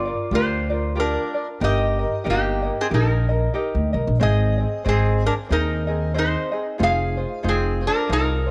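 A metal-body resonator slide guitar, played with fingerpicks and placed up front with a metallic, nasal bite, carries the melody in this dreamy, relaxed Hawaiian piece at 92 BPM with a gentle swing in Eb major, over a light, fingerpicked tenor ukulele and a woody, up-front pizzicato upright bass on steel strings, as the harmony moves through Gm7, Eb/G, Ab and Fm7 in a lightly reverberant studio room across this 8.5-second excerpt.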